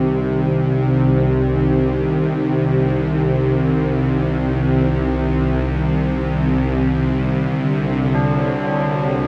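Dark and cavernous, this dark ambient drone drifts in free time in C minor, tuned slightly low with A4 at 437 Hz, and is cut from a longer piece. From the start a tense, string-like bowed drone holds the low register from C2 to C3, its detuned sawtooth tone carrying a noise layer, vibrato and its own built-in reverb, bright and up front in the mix. Alongside it, a sweeping resonant pad sustains evolving chords between D3 and G4, its filter swell and chorus giving it a shimmering, bright edge. The harmony rests on C minor until 7.4 seconds, when it shifts to D and a very quiet bubbling texture appears high on Db5, its random filter steps stirring faintly beneath the surface. At 8.1 seconds soft tubular bells add solemn, metallic arpeggios on D4, mellow and ringing from a padded hammer. A huge, wet ambient reverb with a long 8.1-second decay surrounds the whole, giving the recording its vast, cave-like depth.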